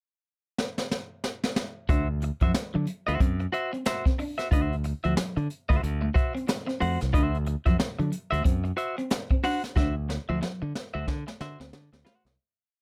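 A tight, swung sixteenth-note funk groove at 91 BPM in D mixolydian, gritty and energetic, opens with a brushed drum-kit pickup fill at 0.6 seconds (high-tuned snare, boomy kick, hi-hat) before the bright, punchy fingered bass with muted ghost notes, a compressed clean guitar playing sixteenth-note rhythm with muted scratches, and a hollow-body guitar's muted single-note riff with subtle chorus all enter at 1.9 seconds over a D9 chord in a dry, up-front mix, until another drum fill and a fade-out arrive from 9.8 seconds.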